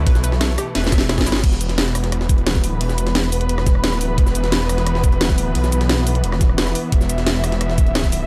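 A digital ambience frames this short cut from a longer dark, technical drum and bass track, moving at 175 BPM in a straight 4/4 with a futuristic, tense mood over an E5 chord. Up front, a thick, detuned sawtooth bass sits low with chorus and overdrive, while a muted string section holds veiled, bowed chords with vibrato, pumping under sidechain compression. A round analog pluck traces bright arpeggios in the background with chorus and digital delay, appearing only until 1.4 seconds. The drums stack a knocking electronic kick, a produced kit with a cracking snare, hi-hat, rim click, shaker and crash, and a gritty, pitched-up jungle-style sampler kit whose high-tuned snare and filtered hats sit further back. A drum fill from 0.8 to 1.4 seconds leads into a second drop that carries the passage to its close.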